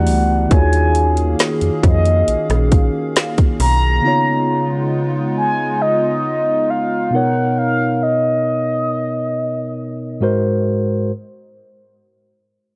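A horn-like synth lead carries the melody in this short, sensual and longing slice of contemporary R&B. Its round, sawtooth-edged tone is eased by a soft attack, chorus and vibrato, with a filter sweep shaping its sustained notes. At a slow 68 BPM in 4/4, a clean, mellow tine electric piano plays the accompaniment for the full length. Alongside it, a hollow, airy pad with a flute-like, detuned quality holds soft chords under chorus until about 7.6 seconds. A snappy FM bass with a metallic, digital bite and a trap drum kit with a hard-clipped kick, woody snare and metallic hats sit up front in the opening; the drums stop at 3.8 seconds and the bass at 4.0. The harmony drifts through rich extended chords from Em11 and D#m11 to C#9, Bmaj9 and finally G#7, all in a dry, gritty sound with a cassette-tape character and little reverb.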